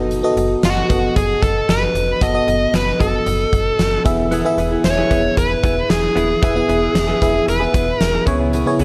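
A straight 4/4 pulse at 114 BPM drives this short, dramatic 1980s-style pop excerpt, its urgent feel anchored by a huge arena drum kit whose punchy kick, fat snare and hi-hat are bathed in gated reverb. Underneath, a slap-like FM bass adds snappy, metallic attacks that decay, while a glassy FM electric piano with a bell-like attack fills out the accompaniment through chorus and phaser. From 0.6 seconds a dark, smooth lead guitar carries the melody up front, overdriven and picked, with digital delay trailing its lines. At 4.3 seconds a direct-recorded clean electric guitar joins with a compressed, picked riff, shimmering through lush chorus and its own digital delay. The harmony moves from B7 over F# to E, touching C#m7 near the end, all within light reverb and a small room ambience.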